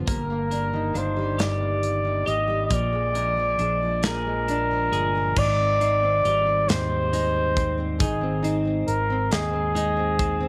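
Romantic and heartfelt, this short fragment of a six-eight pop ballad moves slowly at 46 BPM, counted in dotted quarters, with a straight feel. A soft-attacked flugelhorn carries the solo melody up front in a vintage jazz style, with scooped notes. Beneath it, a double-tracked nylon-string guitar is fingerpicked in a classical manner, while a growly, punchy fingered electric bass, amped and warm, holds the low end. A bright, clean twelve-string electric guitar picks compressed, twangy arpeggios in the background, and an acoustic drum kit recorded in a small room adds a medium-tuned snare, tight kick, hi-hat and crash cymbal. The harmony moves from Ebmaj7/G to Bb7 at 2.7 seconds and arrives on Abmaj7 at 5.4 seconds, set within a moderate spring reverb.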